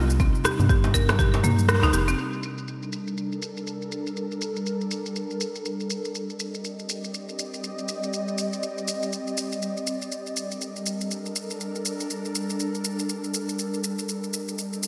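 Swung sixteenths drive this afro house excerpt at 121 BPM in 4/4 and G minor. From the first moment, a round analog bass with a mellow, evolving tone, a dry, buzzing marimba playing woody arpeggios with a delay, and an ethereal pad of detuned, chorused sustained chords all pump against the sidechain over Cm. Within moments a layered deep house kit of rim click, shaker and filtered toms joins them, followed by a deep, tape-touched electronic kick up front, while bright, compressed congas and hard-handed djembe sit in the background. The kick drops out at 1.7 s on a band accent, and by 2.2 s the marimba, bass, congas and djembe have finished. From there the airy pad and the deep house kit carry a driving, warm groove through Gm and Cm/G until 14.9 s. A lush hall reverb and glossy 1980s-style digital production give the whole a bright sheen.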